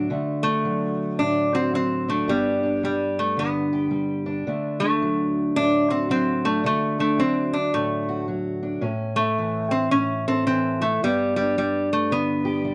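Rollicking yet laid-back, this short acoustic country blues passage is cut from a longer piece and moves at 110 BPM in 4/4, with a swing on the eighth notes in D major. A fingerpicked steel-string parlour guitar carries the accompaniment from the start, its boxy, dark tone sitting up front and ranging from G2 to A4. At 0.4 seconds a lap resonator guitar, played slide with fingerpicks, takes the melody in a compact range from G3 to D4, its voice metallic and nasal and placed just as close as the guitar. The chords move from D to G, back to D, then to A, and settle on G near 11.0 seconds. Moderate studio reverb surrounds the pair, and the overall production leans dark and warm.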